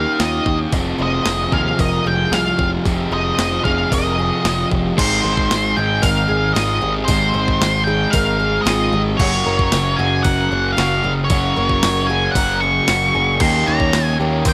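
A straight 4/4 pulse at 114 BPM comes from a crisp 8-bit drum machine with a thumpy kick, medium-tuned snare, hi-hat and crash, sitting up front from 0.2 s in this dreamy, wistful shoegaze and dream pop excerpt in Ab major, which moves from Eb7 and Fm7 to Abmaj7 at 5.0 s and on to Gb. Also up front, an octave-fuzz lead guitar carries the distorted melody through digital delay, while a shimmering, octave-doubled twelve-string acoustic picks arpeggios with chorus and delay in the background. Beneath them, an overdriven semi-hollow guitar plays a riff with reverse reverb, a dark fuzz guitar adds its own chorused riff further back, and a round, direct electric bass holds the low end, with light reverb and digital ambience around the mix.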